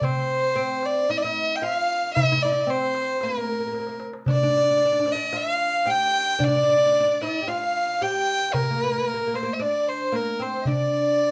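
A soulful, melancholic Arabic maqam ensemble opens together, led by a rich, floating solo violin played sul tasto with a soft attack, sitting up front. Beneath it a woody, fretless oud, plectrum-plucked on double strings, and a very quiet, intimate chamber violin section with light vibrato carry second lines. A darbuka of clay shell and natural skin, played with soft hands, adds a brief fill at 3.8 seconds, all within a small room's moderate reverb in this short excerpt.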